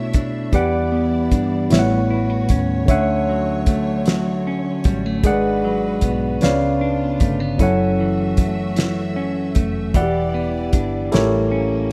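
A rough home-demo sound with light reverb and small-room ambience frames this late-night, yearning slow R&B fragment in 6/8, moving at 51 BPM through a progression from Bm11 to A7b9. Up front, a fat-snared, cloth-damped drum kit with a tight kick and rolled-off top sits beside a bright tine electric piano heard through its built-in speakers, while a dark, foam-muted vintage bass gives round, punchy low notes. A twangy, compressed clean electric guitar carries a picked second line, and a lush, bowed studio string section holds smooth sustained chords with vibrato underneath.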